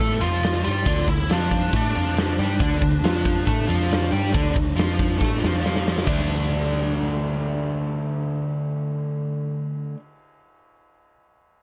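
A heavy, gritty blues rock and southern rock passage in D minor at 138 BPM opens with a biting, overdriven lead guitar melody over a crunchy, double-tracked rhythm guitar riff and a dark, round, foam-muted picked bass. A huge arena drum kit with a punchy kick, medium-tuned snare, bright crash and ride cymbals and a pumping room sound comes in at 0.2 seconds; the lead falls away at 5.6 seconds, and the drums stop at 6.2 seconds after a fill. The up-front riff and the bass then carry the shift from D minor to a D5 power chord, with little reverb on this fragment cut from a longer piece.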